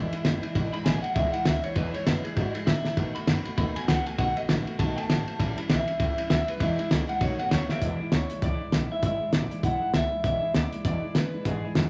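This rollicking, rowdy rockabilly excerpt opens at once on a bright, twangy electric guitar through a small old amp, its picked melody slightly broken-up and lo-fi. Beneath it a picked steel-string dreadnought acoustic guitar picks out the accompaniment and an upright bass plucks woody, thumpy gut-string lines. A cloth-damped drum kit sits up front with a fat snare, tight kick, dark cymbals and a muffled, gritty character. The tune swings at 198 BPM in 4/4 in E mixolydian, moving from E7 to B7 and A7 and back. The clean electric guitar solos until 7.8 seconds, with a drum fill at 2.8 seconds, before a new section returns to E7. A moderate large studio reverb gives the band some space around its rowdy energy.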